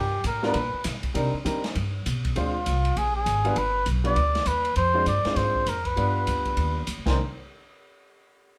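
Swinging in 4/4 at 199 BPM, this cool, smoky small-group jazz excerpt puts a veiled, cup-muted trumpet with light vibrato and scooped notes up front over a woody, thumpy upright bass. A dark, boomy open drum kit enters at 0.2 s, and an intimate grand piano with audible action noise joins at 0.4 s, moving through chords such as G(#9), Cm9 and Dm7b5 in a moderately reverberant studio where the band plays live together.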